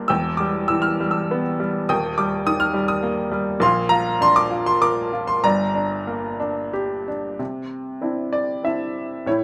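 A rubato pulse in three sways through this brief, relaxed and hopeful classical passage, a fragment of a longer piece for solo upright piano that spans from the deep bass to the high treble. The piano sounds bright, woody and intimate, sitting up front with its action noise clearly audible in a small room's moderate reverb. Harmonies drift from Em through Eb, Bb and Gm before a new section opens on Cadd9 at 7.4 seconds.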